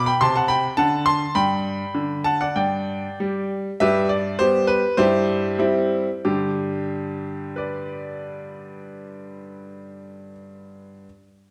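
This classical-period piano sonatina in G major has an elegant, graceful character, moving in 2/4 at roughly 88-106 BPM with a flexible, rubato feel. A solo baby grand piano carries the whole short passage, cut from a longer piece, ranging from G2 up to C6 with a clear, natural tone and long sustain. The opening harmonies pass from Am7/C through D7 and a brief chordless moment before settling on D and an open G5 chord. The tempo slows between 3.2 and 6.2 seconds, easing into a phrase built on G and C/G before returning to G at 6.2 seconds. The piano sits up front, surrounded by a wet recital hall reverb with a 1.4-second decay that adds a spacious, resonant halo to the sound.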